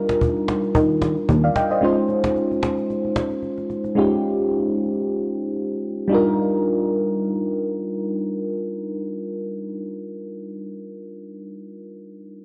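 The recording has a dry, gritty hardware character with a cassette-tape texture, a light reverb and a small-room ambience. It is a soulful amapiano excerpt in 4/4 with a gentle swing on the sixteenths. A mellow FM electric piano carries the accompaniment throughout, its soft, round, dark tone warbling with chorus and a faint noise layer, each chord striking quickly and then decaying. A woody cajon with soft hands and faint snares, roughened by vintage 12-bit sampler grit, sits lower in the mix and drops out by 3.9 seconds. A punchy, funky analog bass, blending sawtooth, square and sine waves into a wave-folded filter pluck, appears up front only briefly from 0.7 seconds. The harmony moves from Ebmaj9 to Dbmaj9 and returns to Ebmaj9 as the second section begins at 6.1 seconds.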